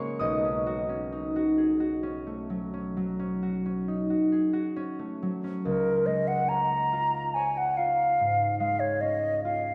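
A mellow, hollow silver flute with a pure, vibrato-laden and tongued tone carries the melody up front, entering at 5.7 s over a Db6 chord after the concert harp has played alone. This is a pastoral, luminous impressionist duo for flute and harp in Db major and 12/8, moving with a rubato feel at about 43-49 BPM in dotted quarters and opening on a Cb9 harmony. The fingerpicked, ringing harp accompanies close up, both instruments bathed in a lush scoring-stage reverb that places the listener further back in the room, in this passage cut from a longer piece.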